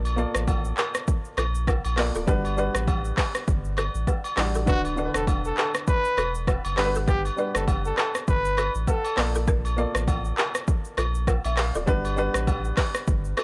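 Afrobeats at 100 BPM with a swung sixteenth feel, joyful and breezy, cut from a longer piece: a punchy deep house drum kit of kick, handclaps, rim click, shaker and dark hats sits up front beside a thick, saturated sub bass, while a mellow, intimate baby grand piano with audible action noise comps through chords moving between Bbmaj7, Gmaj7 and D6. A round, woody balafon riff played with rubber mallets sits in the background with tape echo, and distant agogo bells and woodblock add acoustic color. From 4.7 to 9.3 seconds a warm trumpet with light vibrato takes a brief pop-style solo, all captured with a dry, gritty cassette character in a small room.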